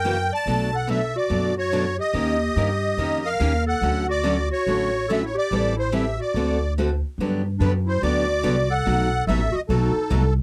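A reedy, shimmering musette accordion carries the melody up front in this charming, swinging excerpt of acoustic string swing, with a breathy clarinet in subtone and light vibrato playing a clear second line beneath it. A picked steel-string acoustic guitar with fresh strings provides the accompaniment, and a woody, thumpy gut-string upright bass anchors the bottom, all four parts playing throughout. The dry, close 1970s-style studio sound keeps the ensemble intimate, and the harmony moves to a new section at 7.2 seconds.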